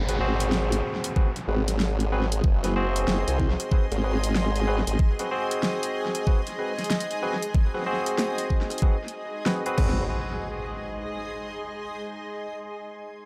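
The formant-sweep wobble bass sits up front in this gritty, playful glitch hop excerpt at 94 BPM in 4/4, its saturated, compressed pulse-and-sine tone wobbling through a formant filter with chorus, sounding from the start to 5.0 seconds and returning briefly near 9.8 seconds. An overdriven electronic kick enters at 1.2 seconds with a knocking, up-front punch, alongside a pop drum kit that has played from the opening with fat snare, rim click, crash and warm hi-hats, overdriven and treated with tape echo, all swung on the sixteenths. A barky tine electric piano plays clean stabs through a combo amp, low-pass filtered and sidechain pumping, with tape echo trailing behind. Around them, a granular cloud pad drifts in a blurred, evolving haze of detuned sine voices with slow attack and built-in reverb, also pumping to the sidechain. Electronic downlifter and impact effects mark the opening and the close, as the harmony moves from a G#7#9 to a plain G# chord at 10.1 seconds. 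The mix is echo-heavy with light reverb.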